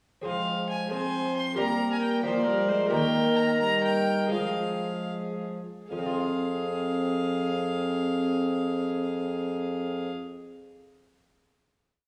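A delicate, fingerpicked lute with rolled chords on gut strings opens this solemn, courtly renaissance-style consort dance in 6/8; at 0.3 s it is joined by an up-front violin melody with a rich, gut-string tone and light vibrato, sustained inner chords from a mellow trombone, and a smooth-topped bassoon bass with passing notes, followed by a reedy, period-style viola counter-melody, before the music slows from 2.2 s and settles on a final chord at 5.9 s in the reverberant glow of a recital hall.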